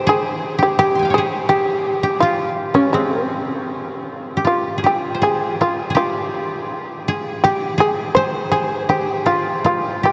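A buzzing, percussive plectrum-plucked shamisen carries the melody with analog delay while a dry, woody koto played with fingerpicks adds a second line from the start, both up front in this austere, calm excerpt of Japanese traditional chamber music in C miyako bushi, moving rubato in 2/4 at around 76-86 BPM and shifting to a new section at 4.4 seconds, all bathed in a dreamy, cassette-tape mix soaked in a huge ambient reverb with a 7.8-second decay.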